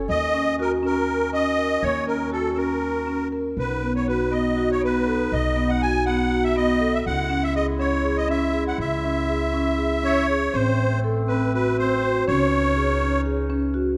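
A musette accordion sits up front and carries the melody, its reedy, shimmering wet tuning giving this restless, pensive piece of contemporary chamber music its character. Beneath it, a marimba played with medium hard mallets spins arpeggios on woody rosewood bars, while a pizzicato upright bass with steel strings supplies a growly, thumpy low line. A dark woodwind section holds sustained chords in the background, distant and roomy, with light vibrato and a tight classical blend. The music moves in an uneven 7/8 with a straight feel, passing through chords such as D#m7, B and C#m before shifting to Am at 10.5 seconds and settling on C#madd9. The accordion drops out at 13.2 seconds, and a moderate concert hall reverb wraps the ensemble in a spacious acoustic in this fragment cut from a longer piece.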